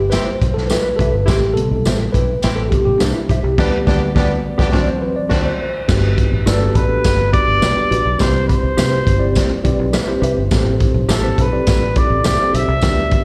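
A mellow tine electric piano with slapback echo carries the opening of this uplifting, joyful 1960s-style soul excerpt at 104 BPM, backed by a crunchy, gritty breakbeat drum kit up front, a punchy fingered electric bass, a jingly tambourine, clean, compressed electric guitar stabs with chorus in the background, and a warm, distant horn section that plays until 5.5 s, before a dark, roomy trumpet takes the jazz-style melody from 6.5 s, all heard live through a venue's PA in a recital hall.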